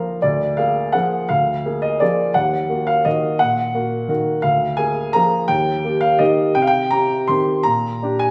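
In a lilting three-beat waltz, the uneven beats and rubato give a graceful, elegant classical piece a gently breathing pulse. A solo baby grand piano, warm and open with long sustain, sits up front and plays across the whole excerpt, ranging from low bass to bright upper register. Generous recital hall reverb surrounds it, lending the short passage the airy glow of a church or concert hall.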